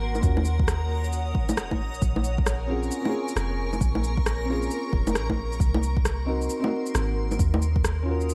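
Melancholic and wistful, this short future garage passage moves at 134 BPM in Bb minor, its 16ths carrying a 63% swing. A cloudy, slowly blooming granular pad holds sustained chords with its own reverb and sidechain pumping, while a round, dark 808-style bass sits up front beneath it. A felt-muted upright piano enters at 0.2 s with intimate accompaniment, its action noise audible and its notes trailing dub echo and pumping. Tape-warm electronic bongos, shaker and rim click sit close to the ear alongside a deep, layered kick that drops out at 7.8 s, and a reversed, dreamy texture drifts in the background. The harmony moves from Ebm7 through Bbm7 and Ab9/C before returning to Ebm7, all set in light reverb and digital ambience over a bed of vinyl crackle.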